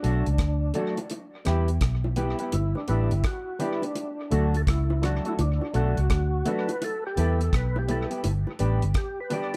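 Swung sixteenths drive this laid-back, warm roots reggae cut from a longer piece, with a deep, dry drum kit of tight kick, hi-hat and rim click touched by dub echo, a round, foam-muted fingered bass sitting up front, and low-tuned bongos in soft hands entering at 0.8 s. A gritty, overdriven tonewheel organ carries the solo melody throughout, thick with chorus vibrato, slow rotary speaker and tape echo, while hollow, nasal organ stabs with a fast attack and a decaying tail and a clean, mellow electric guitar with subtle chorus and tape echo fill out the accompaniment. The changes cycle through D, Em and G in a dark production with light reverb.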